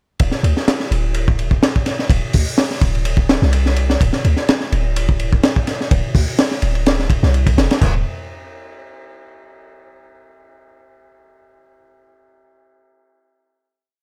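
An energetic, raw breakbeat piece opens at 0.2 seconds with a crunchy, saturated breakbeat drum kit, looped with edits and lightly swung. It has a punchy kick, a high-tuned snare, dark cymbals and toms, all sitting up front with a rolled-off top. Beneath it, a deep, boomy 808-style bass with a sine body and a noise layer plays a skipping, syncopated line in a dry mix, until the piece closes on a final note from 7.8 seconds.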